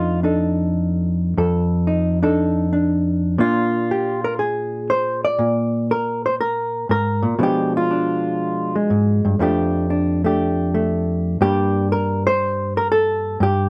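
Relaxed and sophisticated, this short solo jazz excerpt features a lone hollow-body electric guitar, clean, dark and fingered, sitting up front with a compressed tone. It moves through a swung passage over chords of F6, Bb7, Bdim7, F69 and Gm, captured with close, detailed microphones and a light touch of reverb.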